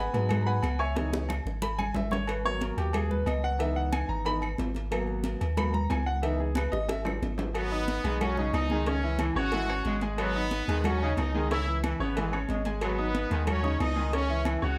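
Fiery and passionate, this salsa excerpt in G# minor drives along at 182 BPM, with a clear, open concert grand piano carrying the opening 7.6 seconds over a deep, punchy sine sub bass. Bright, high-tuned congas and tight bongos, both played with hard hands, join cowbell, ringing metal agogo bells and timbales, and woody claves to fill out the percussion, and a drum fill at 6.6 seconds leads into the second section. There a bright, tight trumpet section takes the melody up front, while a smooth-topped trombone section with light vibrato adds a second line beneath, all set in light reverb over alternating G# minor and C# minor chords.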